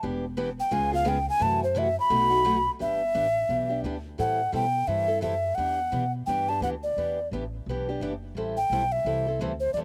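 This virtuosic, swinging jazz manouche piece in E minor at 173 BPM opens with a breathy alto ocarina solo, its clay tone, vibrato and crisp attack close-miked and up front over a dark, boxy, picked ladder-braced guitar with old strings and slapback echo, and a thumpy, gut-strung pizzicato upright bass. The first 2.8 seconds cycle through Em7, C#7, F#m7b5 and B7 before a second section settles on Em7, Am9 and Em9. The dry outdoor sound has little reverb, and the passage is cut from a longer piece.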